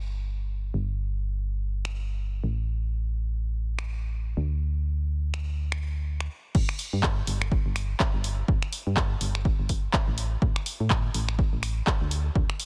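An electronic kick drum sits up front, punchy and tape-warm, arriving with the drop at 6.5 seconds and driving this euphoric, uplifting piano house excerpt at 124 BPM in 4/4 with a light 16th-note swing. From the very start at 0.0 seconds, a solid FM bass carries the low end, round and dark with a fast attack and decaying notes, moving between G1 and A2 under sidechain pumping. An analog drum machine joins at 1.9 seconds, also placed up front, bringing crash cymbal, finger snaps, handclaps and hi-hat, with soft clipping on the snare. The drop marks the shift into the second section, where the kick thickens the groove beneath bass and percussion. Digital ambience surrounds the parts, and the master is dense and heavily limited in a modern style as the excerpt cuts off from a longer piece.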